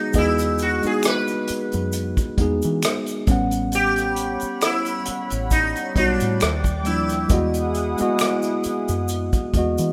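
Smooth and soulful, this slow neo-soul and R&B excerpt moves at 67 BPM in E major with a gentle 16th-note swing. A bright, buzzing sitar with slapback echo carries the melody over a worn, slightly out-of-tune tine electric piano. A roomy acoustic kit with bundle sticks and a tight kick, a dark, foam-muted fingered electric bass, and a soft tube shaker with finger snaps and handclaps in the background support them, and a detuned, chorused pulse-width pad arrives at 4.0 seconds, all in a rough home-demo mix with light studio reverb.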